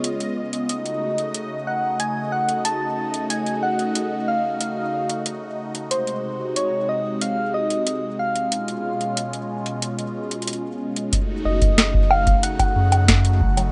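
A straight 4/4 groove at 92 BPM from a booming, up-front analog drum machine with bongos, congas, metallic hats and a crisp snare drives this cerebral, melancholic IDM excerpt in F# melodic minor, where a swirling, phased analog pad with sidechain pumping and 12-bit grit holds sustained chords beneath a gentle, keys-like FM lead melody coloured by cassette tape and digital delay, while a resonant, bubbling stepped-filter texture sits in the background until 11.1 seconds, when a dry, deep electronic kick arrives, followed at 11.5 seconds by a round sine sub bass, all heard in a rough, lightly reverberant home demo mix.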